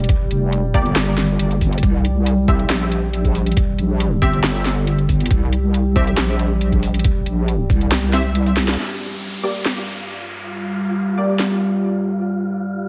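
A wobbling, square-wave bass sits up front in this heavy, meditative slice of deep dubstep, its detuned, saturated tone carrying chorus as it moves between F1 and C2 in G minor at 138 BPM with a half-time feel. Beneath it, a muffled, thumpy electronic kick with overdrive anchors the drop alongside an overdriven garage kit of handclaps, hi-hat and a cracking snare. A deep, moody ambient pad holds sustained chords around G3 throughout, moving from Gm to C, while a muted, filter-plucked dub chord stab, treated with ensemble chorus, cassette tape character and dub echo, flickers quietly in the background. The kick drops out at 8.4 seconds, a drum fill and band accent follow, and at 8.8 seconds the bass stops as an electronic downlifter falls and the harmony returns to Gm. An airy, breathy wind-like noise texture on F4 drifts in slowly at 9.8 seconds, and as the drums and stab fade away, the pad and this atmosphere close the dreamy, reverb-soaked fragment cut from a longer piece.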